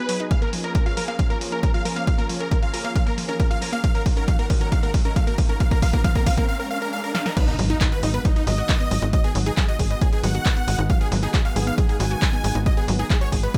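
Uplifting trance at 136 BPM in G# dorian, soaring and bittersweet, where a huge, euphoric detuned supersaw lead carries the melody over a silky string pad and round, chorused pluck arpeggios in the background, all pumping against an up-front punchy kick and an analog drum machine with crash, claps, hats and snare, building with drum fills over A#m7 and D#m7 and a very quiet riser to a break at 6.5 seconds before the drop at 7.4 seconds lands on G#m7 with an impact and a tight, nasal sequencer bass entering at 7.6 seconds.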